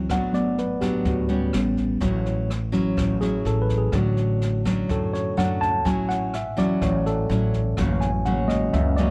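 A straight 4/4 bossa nova groove at 125 BPM in A major, with a distant, roomy brush kit of boomy kick, rim click and snare under a pizzicato upright bass that sounds woody and growly. Up front, a worn, slightly out-of-tune tine electric piano plays a clean solo through a combo amp across the whole excerpt, while a full-bodied, fingerpicked nylon-string guitar with audible finger squeak supports it. The relaxed, sophisticated harmony moves over an A pedal through chords such as Amaj13, Dmaj7/A and F#7/A.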